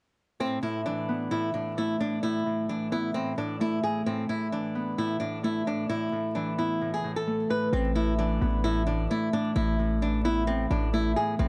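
A punchy, saturated 808-style bass hits hard from 7.7 seconds, its heavy sine tone with a noise layer striking fast and decaying up front in this dark, half-time trap piece at 131 BPM. From 0.4 seconds, a bright, fresh-stringed flamenco guitar fingerpicks the melody in the middle register over a mellow, ringing Celtic harp that fingerpicks a low accompaniment on an Asus2 chord. Light reverb and vinyl crackle give the production a dusky, warm character in this cut from a longer piece.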